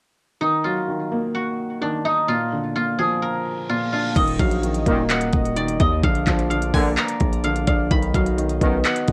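Hip hop and trap in a menacing, brooding half-time feel, this excerpt opens with a silvery, fingerpicked guzheng melody over a felt-muted upright piano with audible action noise, both filtered and softened by cassette tape in a small home room. A reverse cymbal at 3.4 seconds leads into 4.2 seconds, where an overdriven trap kit with a knocking kick, crisp hats, handclaps and crash arrives up front alongside a heavy, distorted 808-style bass. Dark brass enters there too, with sustained chords sitting in the background and distant, roomy low stabs from 4.9 seconds, as the harmony moves from Ebm to Bb and then B.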